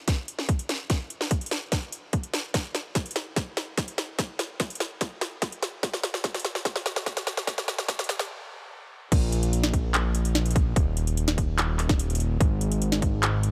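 A fat, detuned sawtooth analog bass with sidechain pumping lands on the drop at 9.1 seconds, arriving after a half-time 146 BPM future bass build-up where an overdriven, hard-clipped electronic kick and a trap kit of sharp snare, metallic hats, handclaps and crash drive a drum fill into a brief stop, all in a dry, bittersweet and dreamy mood.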